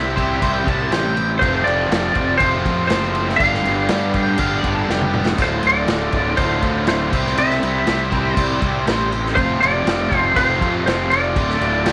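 A straight 4/4 groove at 121 BPM drives this gritty classic rock passage, cut from a longer piece, with a vintage acoustic drum kit entering at 0.2 s, its punchy kick, medium-tuned snare and dark, rolled-off cymbals breathing in a pumping small room, and a drum fill running from 4.9 to 5.4 s. Underneath, a fingered electric bass sits direct and amped, its overdriven fuzz giving a bright, growly low end. Two overdriven, picked guitars, a cranked stack and a distorted electric, play riffs together from the background with a bright edge. Out front, a clean lap steel carries the melody with a compressed, twangy slide tone and slapback echo. An octave-fuzz lead guitar, distorted and warm, adds a second line further back, all moving through C, F, G and Dm in a light, small-room ambience.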